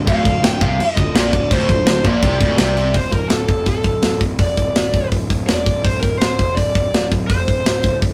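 Heavy metal with a relentless, dark mood, built on a sludgy overdriven guitar riff joined by a very quiet, bright, tight distorted guitar, while a barely audible shimmering chorused pulse-width pad holds sustained chords beneath them until 2.9 s. A punchy fuzz-drenched picked bass and an up-front tight metal drum kit, with crash, hi-hat, kick and a medium-tuned snare, drive the fragment through to its close at 8.1 s. Above them, a bluesy, distorted lead guitar carries the melody in a dusky tone, all captured in a rough rehearsal-room recording with light reverb and warm saturation.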